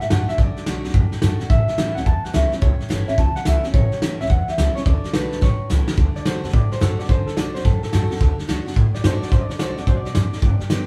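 Rowdy and rollicking, this swung rockabilly excerpt sets a twangy, slightly broken-up electric guitar melody through a small old amp over a full-bodied picked steel-string acoustic guitar, a growly, woody pizzicato upright bass and a soft brush drum kit with a punchy kick sitting up front, the band playing live together in one room with moderate stone-room reverb until a drum fill at 5.4 seconds leads into a clean electric guitar solo from 6.0 seconds.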